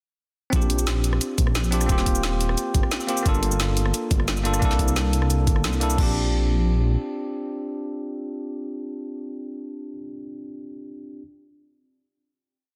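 A short, uplifting liquid drum and bass piece opens with everything arriving together: a gritty, thumpy electronic kick and a rolling two-step kit of woody snare, rim clicks, cabasa, bright hats and crash, given an overdriven edge, beneath a deep, rumbling detuned saw bass playing an up-front dub-style line. Over this, a bell-like tine electric piano plays clean, rootless held chords with syncopated pushes and a dub echo, moving through Bb6, Eb6, Gm9 and C13 before landing back on Bb6 for the final chord. The drums drop out at 6.1 seconds and the bass at 7.0 seconds, leaving the piano ringing alone until 11.2 seconds in a dense, heavily limited modern mix with light reverb.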